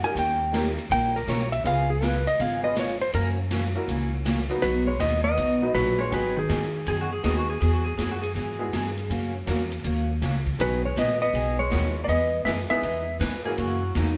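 A dark, compressed lap steel opens this cheerful, down-home western swing excerpt with an up-front slide solo, backed by a bright, short-sustained upright piano in the background, a polished, airy big-band drum kit with a punchy kick and swung eighths, a boxy parlour acoustic guitar with finger squeak, and a thumpy, woody pizzicato upright bass, while a clean hollow-body jazz guitar adds a second line at 4.6 seconds and a fingerpicked pedal steel with volume swells takes up its own line at 6.9 seconds, the band playing live together in a wet stone room.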